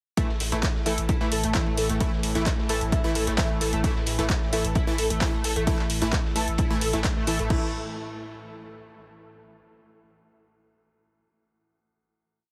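Driving peak-time techno at 131 BPM in a straight 4/4, this short, complete piece feels dark and industrial, opening directly into a drop at 0.2 seconds on an A5 chord. A punchy, layered electronic kick sits up front in a four-on-the-floor pattern, while a tape-toned analog drum machine supplies programmed closed and open hats, claps on the backbeat and crashes. Beneath them, a very quiet, muffled vintage kit plays a looped breakbeat with edits, with a medium-tuned snare and dark ride cymbal. A thick, saturated sine sub bass holds A1 as a low rumble between the kicks, and a gritty, screaming overdriven synth lead repeats a 16-step sequence with guitar-like distortion, chorus, vibrato and dub echo. Airy, detuned supersaw stabs move one chord shape in parallel in a dotted rhythm through a filter sweep, with tape echo, while a warbling analog drone with pulse-width modulation sits in the background; the lead, stabs, drone and sub bass all pump against the kick. 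After a band accent at 7.0 seconds, the track closes on a final chord from 7.5 seconds, the whole heavily compressed into a radio-like sound with light digital ambience.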